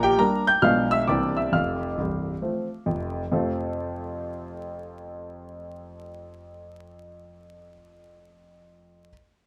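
Stride jazz piano, exuberant and swinging, played in 4/4 with a swung lilt on the eighth notes. A single clear concert grand carries the whole piece as a solo from 0.0 to 9.1 seconds, ranging from C1 deep in the bass up to G6. Its tone is worn yet present, with a deep low end and short sustain that keep the notes crisp and sitting up front. The harmony moves from Gm/Bb through Bdim7 and C9 before settling on F at 1.5 seconds, and a second section begins at 3.3 seconds. The piano sits in a moderate studio reverb, and a layer of vinyl crackle gives the sound an aged surface, as if cut from a longer record.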